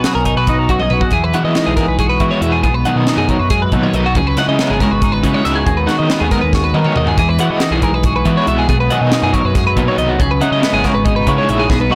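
Blown-out and overdriven with a light reverb, this playful, wistful math rock and midwest emo excerpt races along in 7/8 at 278 BPM (eighths), opening on G#m7/B before cycling through Emaj9, Bmaj13 and C#m11. Two clean, compressed twelve-string electric guitars sit up front: one comps through an analog chorus while the bright other spins high arpeggios. A growling, overdriven picked bass and a crisp, polished fusion kit with a high-tuned snare and punchy kick drive underneath, with drum fills at 0.8 and 6.5 seconds, and a double-tracked, crunchy guitar riff with tremolo joins at 1.3 seconds.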